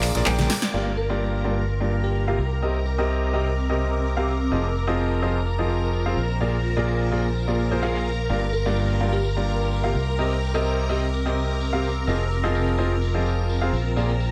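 A brilliant, woody upright piano riff drives this energetic, bittersweet piano house excerpt in C minor at 127 BPM, over an up-front fingered electric bass under a low-pass filter, shimmering sawtooth string-machine violins with ensemble chorus, a cloudy granular pad in the background, and a very quiet loose indie kit with tambourine, while a punchy, overdriven analog drum machine with handclaps and crash plus faint, dry tambourine and congas are heard only in the opening 0.8 seconds, and a very quiet, bell-like FM electric piano with chorus and phaser sparkles with a short melody from 1.0 seconds and again from 8.5 seconds as the chords cycle through Gm7, Cm7, Fm7 and Bb7 in light reverb.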